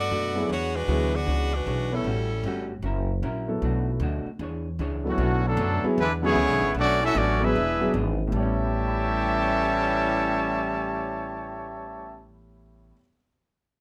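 A tight trumpet section with vibrato carries the melody from 5.1 s in this brassy, swinging big band piece at 153 BPM in A mixolydian, joined by a bright, close-miked trombone section on a second line, after an edgy saxophone section opens the tune and stops at 2.7 s. Underneath, a woody pizzicato upright bass sits up front, while a dark, clean hollow-body electric guitar and a warm concert grand piano accompany in the background through chords such as E13, A6 and Bm9. A moderate club reverb places the ensemble in a club setting.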